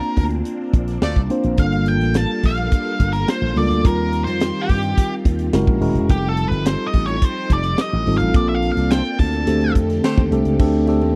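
A dark, distorted octave-fuzz lead guitar solos until 9.7 s over a nocturnal, urban 1980s jazz-funk pop groove at 107 BPM in G minor, backed by a tight funk drum kit with a high-tuned snare up front, a growly, punchy slap bass through an envelope filter, a mellow, clean tine electric piano with subtle chorus, a swirling phased string machine in the background, and a soft-attack horn section adding brief accents at 1.0 s and again from 8.9 s, captured in a dry, close studio sound.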